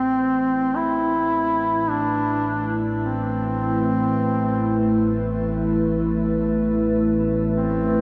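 Unsettling and cavernous, this dark ambient drone in A minor drifts in free time, as an organ-like drone built from detuned sine tones fades in across the full 8.0 seconds, sitting low beneath a deep, moody analog pad that holds a sustained A minor chord with ring-modulated edges and chorus. Up front, a warm, vibrato-laden duduk sings a folk-style solo melody, haloed in shimmer reverb and diffuse ambient delay. The mix is dark and cut from a longer piece, with a cathedral reverb of 4.9 seconds swallowing the sound.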